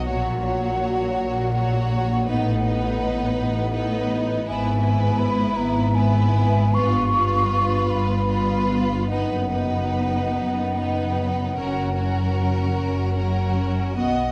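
Serene and tender, this slow romantic orchestral excerpt in 12/8 with rubato sets a rich violin melody over a clear, smooth-topped second violin line, with an airy, hollow flute line floating above, lush violas in accompaniment, and close, bowed cellos and double basses anchoring the bass, heard in a reverberant recital hall with a dark production.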